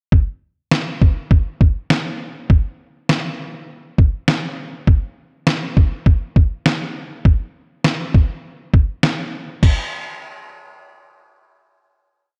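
A dark production with light reverb and a digital ambience frames this short, cool and driving pop piece at 101 BPM in straight 4/4. A lo-fi sampler-style drum kit sits up front from 0.1 seconds, compressed, pitched down and muffled, its thumpy kick, fat snare and crash cymbal holding a straight drum-machine beat through the verse. The kit stops at 9.8 seconds, and the piece closes on a final hit that runs to 12.0 seconds.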